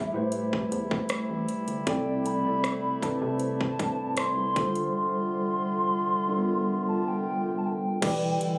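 Sensual and moody, this short contemporary R&B excerpt moves at 78 BPM over Am7, C6, G7sus4 and Em7, with a hollow, woody clarinet-like synth lead carrying the melody through chorus and delay while a distant, roomy woodwind section holds sustained chords beneath. A mellow tine electric piano sits up front in the accompaniment, a rubbery, nasal square bass with a filter pluck bounces underneath, and a trap drum kit enters at 0.3 seconds with a hard-clipped kick, metallic hats, rim clicks and crash. The whole thing has light reverb and the ambience of a studio captured on a phone in the room.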